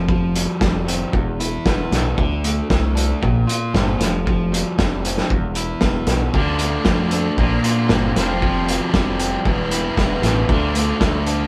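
Bittersweet and cool, this short indie rock passage moves at a straight 115 BPM in 4/4, cut from a longer piece. A crunchy overdriven guitar opens with a picked riff, sitting up front over a growling picked electric bass whose round, overdriven tone anchors the low end. A loose acoustic drum kit comes in at 0.1 seconds with hi-hat, kick and snare; its lo-fi, muffled, saturated sound has a tight kick, a medium-tuned snare and a rolled-off top, all placed close to the listener. At 6.3 seconds a thick fuzz guitar joins with a bright, distorted riff of its own, thickening the texture through to the end at 11.5 seconds. The harmony circles through Fsus2, Em, D5 and Bbsus2, later shifting to Dm and Bbadd9, and the whole band sounds like it is playing live in one small room with moderate reverb.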